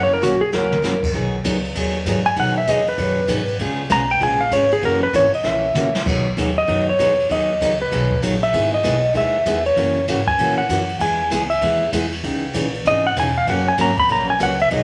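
Cheerful and swinging, this western swing country excerpt moves at 194 BPM in 4/4 with a 63% swing on the eighth notes, set in B major. A clean, compressed lap steel guitar sits up front carrying the melody in a slide solo that spans the whole passage, its fingered lines shaped with volume swells. Beside it, a bright, full-bodied picked acoustic guitar, also up front, supplies the chordal accompaniment through changes such as B6, G#m7, C#7 and F#7. A woody, thumpy upright bass with gut strings plays pizzicato underneath, while a brushed jazz kit with dark cymbals, a medium-tuned snare and a boomy kick enters at 0.2 seconds with a quick fill and adds another just before the second pass at 6.1 seconds. The parts share a moderate large studio reverb that gives the recording a sense of room.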